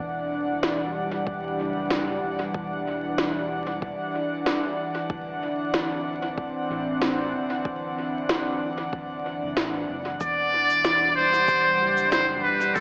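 An airy, breathy pad opens this hazy ambient dub excerpt, holding soft, detuned chords with a chorus shimmer up front, while a round analog bass sits deep and dark in the background. An electronic snare and shaker arrive at 0.6 seconds, the woody snare overdriven and thrown into dub echo, and a layered, tape-toned electronic kick follows at 1.3 seconds to settle the lightly swung groove. The harmony drifts from Em9 to D9 and back to Em9, keeping the deep mood suspended. At 10.2 seconds a solo trumpet with a metal mute steps forward, brilliant yet thin and buzzy, with light vibrato and a distant, roomy quality trailed by dub echo. A wet spring reverb, vinyl crackle and an AM radio tint wrap the whole recording in a dusty, faraway haze.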